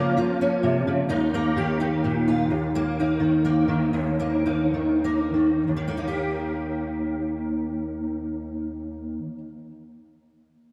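In a loose, rubato three-four that slows between 2.5 and 5.7 seconds, this hopeful, pastoral folk fragment, cut from a longer piece, features a solo fingerpicked steel-string acoustic guitar that sounds bright and full-bodied with fresh strings and audible finger squeak, sits up front, and is treated with ensemble chorus and a diffuse ambient delay, all soaked in a dreamy plate reverb as it moves from Bbm/Db to Eb and settles on Eb at 5.7 seconds.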